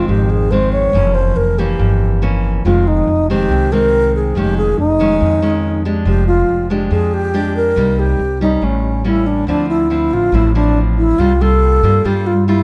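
Intimate, smooth bossa nova cut from a longer piece, where an airy, reedy alto flute with a straight, tongued tone carries the melody up front over fingerpicked classical nylon-string guitar with audible finger squeak and a growly, woody pizzicato upright bass, the three parts sitting close in light reverb within a dark, warm production as the harmony moves into a new section at 9.5 seconds.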